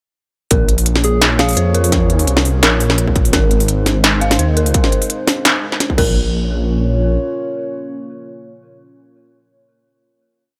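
The sound is dry and close, with little reverb, and this short half-time drum and bass piece feels spacious yet tense. An industrial kit with a clanging snare, crisp hats and crash cymbal sits up front in a sparse half-time beat alongside a distorted electronic kick, their tape-warmed tone re-recorded in a small room. Beside them, a deep, rumbling detuned saw bass plays chopped phrases. Further back, an eerie, inharmonic FM bell repeats a 16-step arpeggio through chorus and tape echo, and a round, gentle keys-like lead adds a short, warbling phrase at 1.0 seconds. A moody analog pad of sawtooth and triangle tones with a sub octave enters on a slow attack, colored by chorus, phaser and sidechain pumping. The drop runs to about 6.2 seconds, and the pad then sustains through the final hit until 9.5 seconds.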